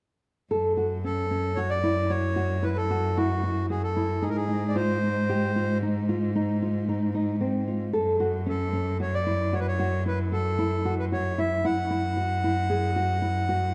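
Set in a dark, reverberant recital hall, this fragment of a longer contemporary instrumental piece moves in a pensive, restless 7/4. A thumb-plucked classical nylon-string guitar with fresh strings and audible finger squeak plays arpeggios from 0.5 seconds, alongside a bowed solo cello that carries the bass up front with a bright, biting, intense vibrato. At 1.1 seconds a reedy, clear single-reed accordion enters up front with the melody, over chords that shift between F#m and G# before settling on F#5.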